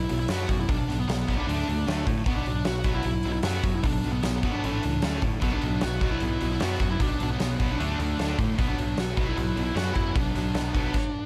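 A straight 4/4 pulse drives this aggressive hard rock excerpt, with a huge arena drum kit up front delivering a punchy kick, fat snare and bright cymbals, and a direct-sounding picked electric bass holding down the low end. A bluesy, distorted lead guitar carries the melody over riffing from a high-gain guitar set in the background and a very quiet overdriven electric guitar, while a second, double-tracked high-gain guitar joins the riff at 5.4 s. The sound is dry, with little reverb, as the chords move among B5, D5 and A5 before landing on a Bm chord.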